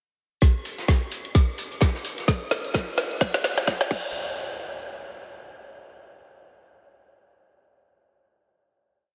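A tight, up-front electronic kick drives this short, gritty and bouncy house piece with a swung four-on-the-floor pulse, layered with a garage kit whose woody snare, metallic hats and crash sit just as close in the mix. Beneath them, a very quiet looped indie breakbeat adds a fat, saturated snare, shaker and hi-hat with a rolled-off top. The drums form a build with a fill and filter sweep from 0.4 s to 4.1 s before a final hit rings out to 6.0 s, all bathed in a huge, dreamy reverb with a high-pass filter.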